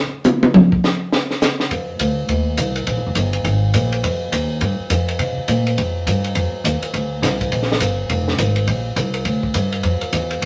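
Playful and sophisticated, this fast small-group swing and bop jazz at 207 BPM opens with a brief solo on a dry, up-front compact cocktail drum kit with dark cymbals, a high-tuned snare and a punchy kick, before a woody, thumpy pizzicato upright bass enters at 1.7 seconds, both set in a moderately reverberant large studio room.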